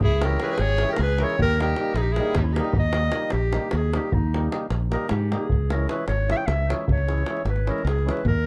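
A clarinet, violin, bright electric bass and deep davul open this fragment of Balkan wedding-band music together, with a mellow, reedy accordion joining at 0.2 seconds. It moves in a brisk 7/8 at 306 BPM counted in eighths, set in Eb phrygian dominant, and the mood is virtuosic yet bittersweet. The clear, classical-style clarinet carries the melody up front with a touch of tape echo, while a single bowed violin with rich vibrato plays a smooth second line until it drops out at 2.8 seconds. From there the clarinet takes a solo over the dark accordion accompaniment, the direct electric bass and the band-limited, vintage-sounding davul. The harmony shifts from Dbm to Eb and back to Dbm at 5.5 seconds, captured with close, detailed microphones and a light reverb.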